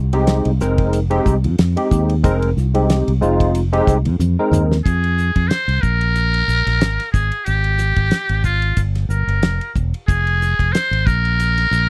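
A dry, close studio sound in a 1970s style, with little reverb, frames this short cut from a longer electric jazz fusion piece in F minor, running at 92 BPM in 4/4 with a light swing on the sixteenths. The mood is intense and driving, set by a damped 70s drum kit with a fat snare and tight kick, and a fingered electric bass that sounds direct and amped, both up front from the opening through to the end at 11.9 seconds. A barky tine electric piano, lightly overdriven and treated with ensemble chorus, carries the accompaniment on an Fm9 chord until 4.8 seconds, where a drum fill hands off to the next passage. From there a trumpet with a metal mute takes the melody in a solo jazz style, buzzy and raspy with vibrato, scooped notes and a slapback echo, over chords moving through Absus2 and Gm7 before settling back on F minor. The piece closes on a final stretch with the harmony dropping out.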